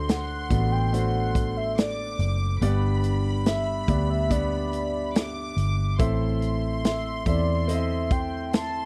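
A slow, heartbroken pop ballad excerpt, where a mellow, horn-like synth lead with chorus and slapback echo carries the melody, its vintage sawtooth tone warbling with vibrato and a soft attack. A concert grand piano with deep bass accompanies over a dark, foam-muted fingered electric bass and a punchy, natural country drum kit of kick, snare and hi-hat. A quiet, intimate violin section bowing sul tasto adds a high second line with its own slapback echo, all within a dry, close 1970s-style studio sound as the chords move from D7 to G to Am.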